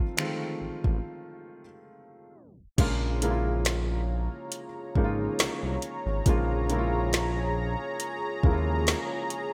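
A lightly swung sixteenth-note feel in 4/4 carries this moody, late-night contemporary R&B fragment, cut from a longer piece. A felt-muted upright piano opens the accompaniment, soft and boxy with audible action noise and short sustain, joined by an electronic R&B kit of soft kick, woody snare, metallic hats, finger snaps and a crash, treated with gated reverb and re-recorded in a small room. A gliding synth bass with portamento, built from sawtooth and square waves, sits up front beneath them. A break arrives at 1.0 seconds, capped by a tape stop at 2.3 seconds, before the harmony shifts from F7 to Bbm7 and a dark analog pad with a sub octave, slow attack, chorus and sidechain pumping enters at 2.8 seconds. The whole mix has light reverb and a bright 1980s-style digital sheen.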